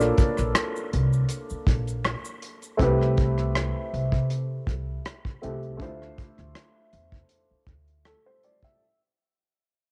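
Late-night and smooth, this neo-soul R&B excerpt at 80 BPM with a light 16th-note swing fades out across its full length as a woody, short-sustain upright piano with a cassette-tape tint moves through Bbmaj7, Am9/C and Dm9 over a thumpy pizzicato upright bass and a dark, rolled-off soul kit of hi-hat, punchy kick and rim click, while a faint tube shaker and finger snaps drop out at 2.8 seconds, all captured as a home cassette recording with light reverb and studio ambience.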